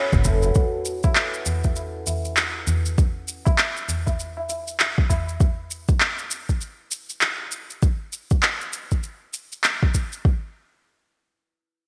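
A bright, 1980s-style digital sheen and a lush hall reverb frame this mystical, meditative organic downtempo piece, cut from a longer work, moving at 99 BPM in 4/4 with a swung sixteenth feel. A shimmering, hammered santur plays low-pass-filtered, delayed arpeggios until 3.7 seconds over a brief, deep, round analog bass note on a B7 chord, while a high-tuned, ringing tabla with a compressed, saturated edge plays until 5.4 seconds. An up-front soft electronic kick and a produced kit of handclaps, shaker and toms, both set in small room ambience, carry the groove to about 10.4 seconds.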